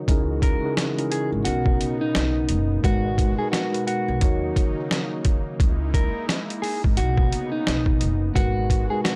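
Up-front, gritty sampler-style boom-bap drums with a thumpy kick drive this dark, reflective hip-hop excerpt, where a woody pizzicato upright bass with transformer saturation anchors a mellow, clean tine electric piano and a smooth, detuned analog pad with chorus carrying lush jazzy chords under a dark, fingered electric guitar melody colored by phaser and analog delay, all in a dry, gritty hardware sound.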